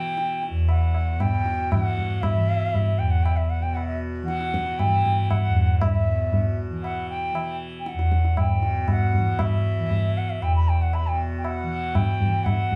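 A straight seven-beat cycle at 117 BPM underpins this solemn, meditative fragment of Hindustani classical music, cut from a longer piece and tuned to A4 = 438 Hz. The high-tuned tabla enters at 0.2 s with a ringing, close and dry sound, carrying the percussion through to the end at 12.8 s. Beneath it, the tanpura holds a softly plucked drone from E2 to E3 that is buzzing and shimmering, sitting up front. The bamboo bansuri carries the melody between E5 and B5, its airy, tongued tone marked by vibrato, rolled-off highs and an unsteady line. A light reverb and small room ambience frame the trio.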